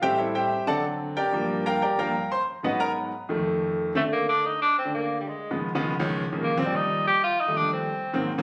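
Sunny and lively, this short jazz cut in straight 4/4 opens with a clear, natural grand piano playing alone through richly shifting seventh and ninth chords until a breathy, vintage-toned tenor saxophone with vibrato takes the melody up front at 4.0 seconds, the pair sitting in a moderate club reverb with the compressed intimacy of a phone recording made in the room.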